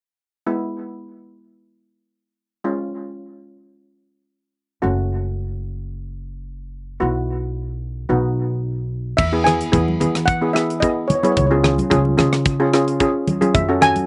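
A bright, up-front double-seconds steel pan, struck with hard rubber sticks, carries the melody of this sunny, festive calypso excerpt in E major at 110 BPM. It arrives at 9.2 seconds together with a tight metal drum kit (kick, hi-hat, rim click and crash) and close, thick-skinned congas. Before that, a shimmering lead pan played with medium rubber sticks provides the accompaniment from 0.5 seconds with a slapback echo, and a woody, thumpy pizzicato upright bass on steel strings joins at 4.8 seconds, all captured outdoors with little reverb and a softened top end.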